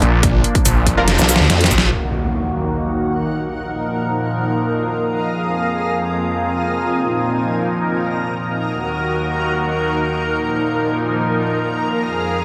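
Heard through a moderate digital room reverb, this chaotic, menacing cut of heavy wobble dubstep at 142 BPM in half-time opens mid-drop with a growling, detuned saw bass and an overdriven drum kit with metallic hats and a deep snare, all over a lush, airy supersaw pad. A punchy tape-warm kick joins at 0.2 s, a faint, nasal orchestra-hit-like stab sounds at 1.0 s, and a brief formant-sweep wobble bass appears at 1.2 s. At 1.9 s the basses and drums stop as an electronic impact lands, and the pumping supersaw moves under a filter sweep through Ebm, Bbsus4 and Fm chords, joined at 2.6 s by a cloudy, evolving granular pad.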